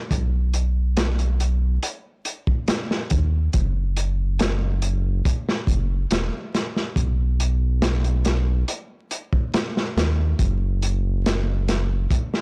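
A round analog bass and a crunchy breakbeat drum kit enter together at 0.1 seconds in this short, melancholic and smoky trip hop excerpt, moving at a slow 70 BPM in a straight 4/4. The bass sits deep and up front, its sustained tone built from sawtooth, sine and triangle shades with a fast attack and an evolving, dark character, spanning E1 to D#2. The drums, heard as hi-hat, kick and snare, carry a small-room, acoustic feel with a tight kick and a medium-tuned snare that is softly clipped, the whole kit sounding gritty and saturated with a rolled-off top. The recording itself is blown-out and overdriven, dusted with vinyl crackle and kept nearly dry, and both parts sit close to the listener. The bass stops at 12.1 seconds, leaving the drums to finish alone at 12.4 seconds.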